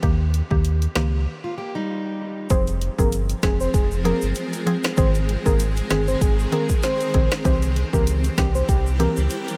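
Bouncy and tough, this dancehall excerpt rides an up-front electronic drum kit with a deep kick, woody snare and dark hats, a sustained sine-and-triangle sub bass with its octave, and a mellow, round FM mallet-like synth pluck that pumps with sidechain and shimmers with chorus. In the break, from 1.4 seconds, a fingerpicked plugged-in steel-string acoustic guitar plays brief arpeggios through analog delay, and from 2.5 seconds a soft, detuned octave-layered synth lead carries the melody with vibrato, chorus and delay while a bright, close tube shaker sits in the background. A cloudy, evolving granular pad enters at 3.3 seconds with sustained chords, its built-in reverb and sidechain pumping giving a blurred glow behind the groove.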